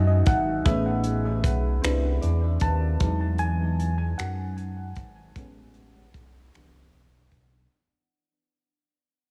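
A fading passage of slow six-eight R&B opens all at once on an Emaj9 chord, with a mellow, clean electric guitar line, a warbling vintage FM electric piano carrying the solo, and a fat, saturated analog bass sitting up front. A dry, damped 70s drum kit comes in at 0.3 seconds with finger snaps, hi-hat and a tight kick, its rolled-off top keeping the mood intimate and tender. The dark, compressed guitar plays a second line until 3.6 seconds, and both it and the electric piano trail tape echo. The bass is thick and detuned, with a moving notch and a sustained, wave-folded growl beneath the Emaj9, Amaj9 and Cmaj9 changes. The echo-heavy mix sits in light reverb and small room ambience, and the whole cut fades out from the start, as if lifted from a longer piece.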